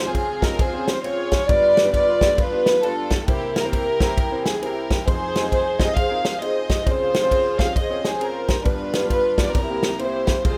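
A lilting swung pulse in four drives this short stretch of uptempo gospel, cut from a longer piece, with a mood that is both fervent and solemn. A natural acoustic drum kit holds the groove from just after the start, its punchy kick, medium-tuned snare and ride cymbal sitting up front in a studio room. Over it, a string section carries the melody from the very beginning, bowed sul tasto with a soft attack so the ensemble sounds pure and floating. Beneath the strings, a grand piano plays a warm, natural-toned accompaniment, reaching from deep bass notes up into the middle register while sitting lower in the mix. The harmony cycles through Dbmaj7, G7, C7 and Fm7 before returning to Dbmaj7 and heading back toward C7. Small room ambience and a rough home-demo mix give the whole a close, unpolished feel.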